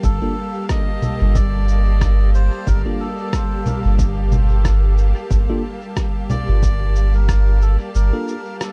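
A dark, dry-sounding production carries this brief ambient dub cut at 91 BPM in G minor, spacious and meditative, resting on a single Gm9 chord with a swung 16th-note feel. A deep, round sub bass sits up front beneath smooth, bowed studio strings with light vibrato, while a muffled, pitched-down, sampler-style layer of cabasa, rim click and congas and a punchy electronic kick in the background share small room reverb, the percussion also trailing dub echo. A clean tine electric piano through a combo amp adds phased stabs with dub echo from 0.2 seconds, a reedy, breathy melodica sings a mellow line through dub echo, and the kick drops out at 7.4 seconds before a break arrives at 7.9 seconds.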